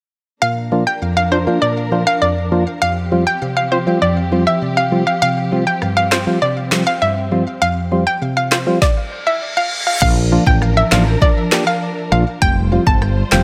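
A straight 4/4 dancehall groove at 100 BPM sets a sunny, bouncy mood, with a bright, hollow, nasal square-wave pluck carrying the melody through chorus and digital delay, while a percussive organ stab and dark, lush bowed strings with sidechain pumping move through Bb, Fsus2 and Csus4. An electronic afro-pop kit with a deep kick, a woody snare, rim clicks, handclaps and crash enters at 5.8 seconds, tape-warm and up front, and a reverse cymbal at 9.1 seconds leads into a new section at 10.0 seconds. There, a growly, round fretless bass arrives and the hi-hats drop out, all in light reverb in this excerpt cut from a longer piece.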